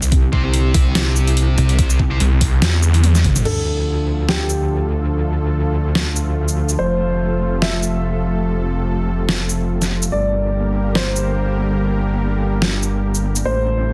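A dense, heavily limited heavy wobble dubstep excerpt in D minor at 144 BPM with a half-time swing, chaotic and menacing, opens on a drop where a snarling, growling saw bass, a knocking overdriven electronic kick, thick fuzz guitar stabs and a lush supersaw pad pumping under sidechain crash in together. After a drum fill at 3.0 seconds, the saw bass and kick fall away at 3.5 seconds, leaving the pad, a metallic, chorused wobble bass and an up-front dubstep kit with a deep snare and bright hats, as a dark, worn baby grand piano melody enters, echoing through delay over chords moving from Dm to F to Gm.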